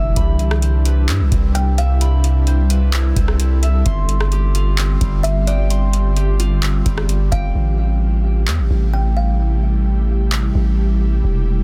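Ethereal and melancholic, this half-time cloud-rap excerpt at 130 BPM in A minor sets a deep, sine-toned 808 bass and a booming analog drum machine with metallic hats up front, under a detuned, slow-blooming pad with ensemble chorus and sidechain pumping, ringing fingerpicked harp arpeggios through tape echo until 9.6 seconds, and a woody, hollow kalimba melody that returns at 5.2 seconds, all moving through Cmaj7, G7sus4 and Am7 in a dense, heavily limited mix.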